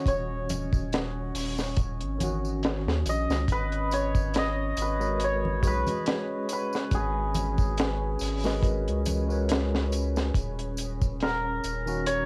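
This short cut from a longer piece sounds like a home recording on cassette in a small room, with the tape's grain around a slow, swung trip hop groove that feels melancholic and hypnotic. Up front, a shimmering, ringing hammered dulcimer carries the melody, its cassette grain trailed by dub echo. A clean tine electric piano, heard through its built-in speakers with tremolo and tape echo, supplies the accompaniment, while a detuned sawtooth pad with a sub octave, chorus and reverb sits moody and deep in the background. A round analog bass with a fast attack anchors the low end beside a dry, dark reggae drum kit of tight kick, high-tuned snare and hi-hat, with tambourine and congas adding a live-room, acoustic touch. The harmony moves from D#m7 to G#m11 at 3.5 seconds and returns to D#m7 at 10.3 seconds.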